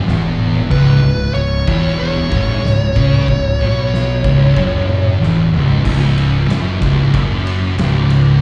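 Stoner and doom metal with a heavy, brooding mood, captured like a live club gig through the venue's PA, where an up-front fuzz guitar and a darker one tucked in the background grind out a riff over growly, overdriven fingered bass and an oversized low-tuned drum kit with a boomy kick, fat snare and dark cymbals, while a compressed fuzz lead guitar with slapback echo sings a high melody from 0.7 to 5.2 seconds before a drum fill leads into the unharmonized closing section at 5.8 seconds.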